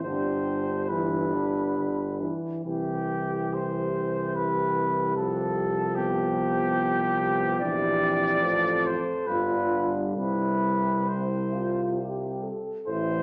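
A classical, hymn-like passage for brass band, tender and lyrical, moves in a gently flexible triple time, cut from a longer piece. A clear flugelhorn carries the melody up front with light vibrato, sounding distant and roomy, while a mellow French horn section shapes a tight second line just beneath it. A dark trombone section sits in the background as accompaniment, joined by a euphonium with light vibrato and a tuba anchoring the bass, both warm in tone. All five parts play together throughout the 13.2 seconds, and the harmony travels from G through C to a closing resolution on C. A recital hall reverb gives the ensemble a wet, spacious bloom.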